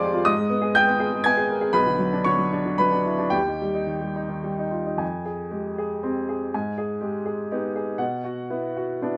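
A clear, woody upright piano plays alone from the start, its smooth, vintage tone and long sustain sitting up front in light reverb as it drifts through a melancholic, reflective neoclassical minimalist passage in a rubato three-beat lilt. Its harmonies wander from Abm through Bmadd9 to Eb, then shift at 5.0 seconds into a new phrase moving from Fm back to Abm and on to Bm. The range stretches from deep bass notes to bright upper tones before this short fragment of a longer piece breaks off at 9.2 seconds.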